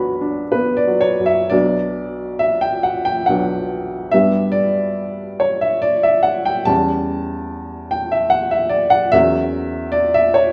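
A woody, vintage-toned upright piano plays alone from the first moment of this melancholic, yearning romantic nocturne in B minor, drifting in rubato 3/4 at 59-75 BPM through Bm, G, C#dim/E and F#7/E, its smooth, short-sustained notes sitting up front in a moderate recital hall reverb with a rolled-off top, in a 10.5-second fragment cut from a longer piece.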